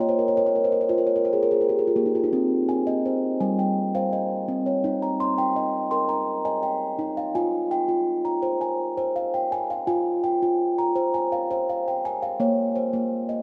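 Meditative and gentle, this world-flavored piece for tuned percussion unfolds in 7/8 as a solo steel tongue drum, struck with rubber mallets and placed up front, rings out with a round, pure tone across a span from G3 to C6. It opens with a drum fill over the first 2.3 seconds, then moves from an opening passage into a contrasting one at 7.4 seconds, its chords shifting from Bbm through Cm and Eb to Fm before returning to Bbm. A lush cathedral reverb with a 4.8-second decay surrounds every note in this fragment of a longer work.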